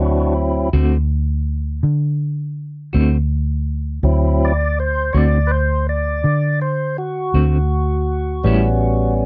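A fat, clean tonewheel organ opens the excerpt, holding sustained chords through a slow rotary speaker, while a round, foam-muted vintage electric bass sits up front beneath it in this rollicking, gritty slow blues at 54 BPM with a straight 12/8 feel. At 0.7 seconds a clean, picked electric guitar with tremolo joins as accompaniment, and the harmony rests on D7 before moving to A7 at 8.4 seconds. The dark, warm production and light reverb give this short cut from a longer piece a close, intimate character.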